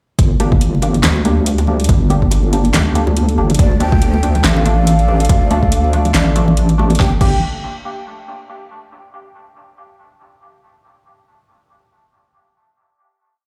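A deep, dark wobble bass sits up front in this dark, meditative deep dubstep piece in G minor at 141 BPM with a swung half-time feel, carrying modulated phrases with changing wobble speed under a punchy, overdriven electronic kick, a deep house kit with a fat snare and metallic hats, bright echoing bongos and congas in the background, muted off-beat dub chord stabs through phaser and dub echo, and a moody, evolving analog pad. A breathy, hollow ney joins at 3.6 seconds with echoing call-like motifs before the drop gives way to a final chord at 7.0 seconds, all set in a large studio reverb.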